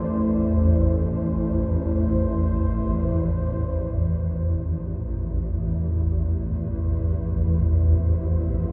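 A swarming, granular drone sits up front in the low register, its detuned unison sine voices holding a tense, evolving A minor tone with slow attack and long release, washed in reverb. This short cut from a longer dark ambient piece moves in free time, with a desolate, dark mood and tuning set to A4 = 439 Hz. Above it, a deep, moody pad sustains chords built from sawtooth, sine, triangle and a sub octave, its chorus lending a shadowy shimmer. A bubbling, resonant texture of detuned sawtooth with random filter steps hovers mellowly on a single high note until 3.4 seconds, when the pad begins a fade-in that carries through to 8.7 seconds. The light reverb and softened top end keep the whole recording murky and enclosed.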